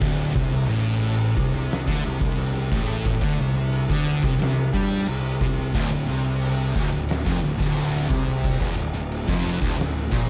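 Heavy and brooding, this stoner and doom metal excerpt moves at 89 BPM in a straight 4/4, with three thick fuzz guitars grinding out riffs: one very quiet, one dark and distorted set in the background, and a bright, double-tracked distorted third arriving at 5.8 seconds, all over a growly, overdriven picked bass and an oversized low-tuned drum kit that sits up front with a punchy kick, fat snare and dark cymbals in a bright stone room, as the harmony shifts from C5 to Dm at 5.7 seconds within a dry, dark production.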